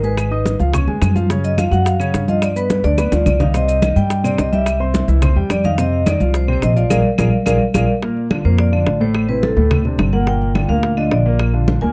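A metallic vibraphone with slow motor vibrato and tape echo carries the melody in this lively, sophisticated Afro-Cuban jazz excerpt, then takes a solo from 8.0 seconds after a band accent. A dark, vintage grand piano with audible action noise accompanies, while a growly, woody pizzicato upright bass sits up front. Round low-tuned bongos, hard-hand congas in the background, distant claves and grainy maracas, which stop at 7.8 seconds, drive the rhythm in a dry, close 1970s-style studio sound.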